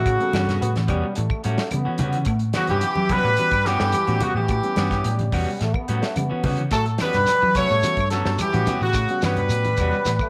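Afrobeat at 108 BPM in A mixolydian, this hypnotic, funky excerpt sits on a single A13 chord throughout its roughly ten seconds. A clear, punchy horn section carries the melody up front with light vibrato and a slapback echo. Beneath it, a buzzy, thin trombone with a metal mute and a veiled, cup-muted trombone section play second lines, both also touched by slapback echo. The fingered electric bass is dark and round. A reedy electric piano, a slightly broken-up guitar playing arpeggios, and a clean guitar adding stabs with slapback echo fill the background. A dry soul drum kit with a tight kick and a medium-tuned snare drives the groove alongside thick-skinned congas and woody claves, and a grainy shekere joins at 6.7 seconds, all set in light studio reverb.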